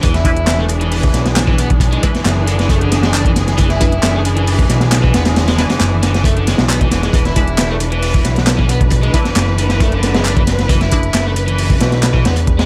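Energetic and swaggering, this breakbeat cut is driven by an up-front, gritty acoustic break kit with a high-tuned snare and tight kick, layered with a lighter overdriven electronic garage kit of handclaps and hi-hat, all over a fat, nasal, detuned analog bass. A bright, double-tracked overdriven electric guitar riff trails dub echo, while a distant string section holds lush bowed chords with vibrato and portamento, pumping under sidechain compression. From 0.3 to 11.0 seconds a resonant, wave-folded dub chord stab plucks through phaser, chorus and echo, and the dry mix sits under a layer of vinyl crackle.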